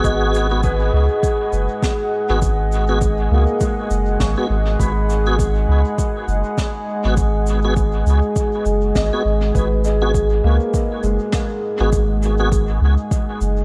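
Ambient dub with a deep, hazy mood, built on a round, up-front sub bass and a detuned, warbling pad holding sustained chords, while a felt-muted upright piano with audible action noise and sampler grit plays arpeggios through analog delay, a lightly overdriven tonewheel organ adds stabs through slow rotary speaker and dub echo until 12.5 seconds, an overdriven electronic kick thuds, and a quiet brushed snare and shaker trail dub echo, all in a dreamy, reverb-soaked mix.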